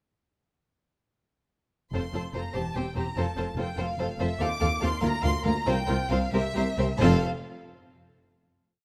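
A rich, focused violin melody leads this spirited, quick classical-period movement in F major and 6/8 at 86-98 BPM, with second violins and distant violas on smooth repeated notes and sustained chords, warm cellos with portamento, and lush double basses doubling the bass line, all playing from 1.9 seconds, slowing from 3.8 seconds toward a final chord at 7.0 seconds under light reverb and close, detailed microphones.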